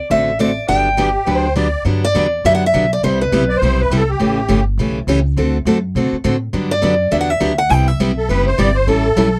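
A picked steel-string acoustic guitar opens this lively, swinging jazz manouche excerpt with the melody over a second picked guitar's chordal accompaniment and a woody, thumpy pizzicato upright bass on gut strings, while a reedy, shimmering musette accordion adds an up-front second line from 1.0 seconds, the parts moving through a D7, Gmaj7, Cmaj7, A7 cycle in a dry, close 1970s-style studio sound.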